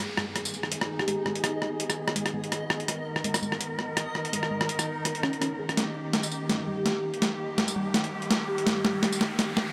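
Drenched in a huge ambient reverb, this cinematic, spacious half-time drum and bass excerpt at 166 BPM in G# harmonic minor builds throughout, with a dark, bowed cello section holding sustained chords under a filter sweep, a warbly, lo-fi pluck playing chorused, delayed arpeggios in the background, a reversed, granular swelling texture, and a gritty, overdriven sampler-style drum kit up front that breaks into a fill at 5.8 s as the chords move from G#m to D#, while a mellow soft-mallet marimba melody returns at 6.8 s and an electronic riser enters at 7.1 s.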